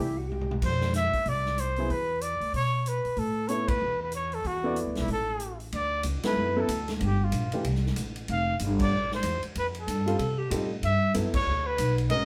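A moderate studio reverb surrounds a small jazz group playing live in one large room, swinging at 188 BPM with a sophisticated mood in this passage cut from a longer piece. Up front, a breathy, whispered trumpet carries the melody with light vibrato and scooped notes over a woody, growly upright bass, while a mellow alto saxophone adds a brief second line at the start and again at 10.1 seconds. A natural-sounding drum kit with a punchy kick enters with a short fill, band accents punctuate the passage, and a baby grand piano accompanies from 1.8 seconds, drops out, then returns near the end.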